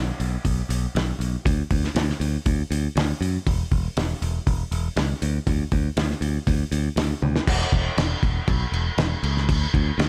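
A straight, steady 4/4 pulse drives this short classic rock clip cut from a longer piece, its mood sunny and swaggering. A bright, growly picked electric bass opens the recording alone, sitting up front with a direct, modern edge as it moves through its low register. Just after, at 0.2 seconds, a cloth-damped drum kit joins, thuddy and muffled with a fat snare, tight kick, and a gritty, saturated, lo-fi character whose top end is rolled off. Crash cymbal, hi-hat and toms round out the kit, which is also placed up front in a dry room with little reverb. A drum fill at 7.2 seconds leads into a new section at 7.5 seconds, and both parts carry on to the end at 10.1 seconds.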